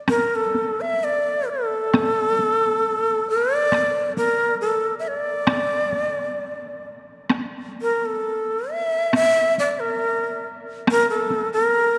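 Solitary and still, this excerpt of Japanese chamber music drifts in a rubato 2/4 at around 62-71 BPM. A breathy, reedy bamboo shakuhachi carries the melody up front from 0.1 seconds, with a bright chiff, tongued notes and vibrato. A taiko ensemble played with hard sticks sits close and dry beneath it until 11.5 seconds, all within a long, wet cathedral reverb.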